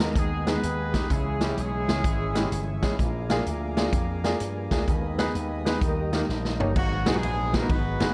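A swinging big-band drum kit sits up front in this short, solemn and soulful uptempo gospel excerpt, its boomy kick, medium-tuned snare, hi-hat, ride, crash and toms sounding roomy and distant, with a fill at 6.3 seconds. The pulse runs at 127 BPM in a swung 4/4 in G# harmonic minor, with chords moving from G#m through C#m, A#7 and D# before landing on G#m7. A clear, punchy horn section carries the melody in octaves, with a smooth top, stating it until 2.8 seconds and returning at 6.8 seconds for the closing phrase. Beneath it, a worn concert grand piano with deep bass and short sustain plays accompaniment, while a bright, amped slap bass drives through an envelope filter. A very quiet tonewheel organ holds smooth chords with key click, chorus vibrato and a slow rotary speaker, and a reedy, sweet accordion with light tremolo tuning sustains chords in the background until 6.8 seconds. Light reverb and a dark, warm production round out the sound.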